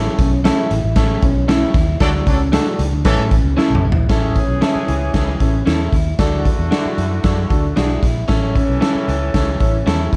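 The raw garage drum kit sits up front with a punchy kick, a medium-tuned snare, hi-hat and toms, its sound gritty and saturated with a rolled-off top, and a drum fill arrives at 3.6 seconds. This is uptempo 1960s-style soul in A major at 114 BPM, an uplifting, danceable cut taken from a longer piece, moving between A and D chords in a straight 4/4. A round, foam-muted fingered electric bass drives the low end, while a clear, intimate grand piano comps with its action noise faintly audible. One electric guitar through a small old amp plays slightly broken-up picked stabs, and a second guitar at the edge of break-up carries a compressed riff in the background, bathed in lush chorus. From 2.0 seconds a distant, roomy horn section adds a second line with light vibrato and slapback echo, joining a band accent that runs to 4.1 seconds. Light reverb and small room ambience give the whole a dark, warm production.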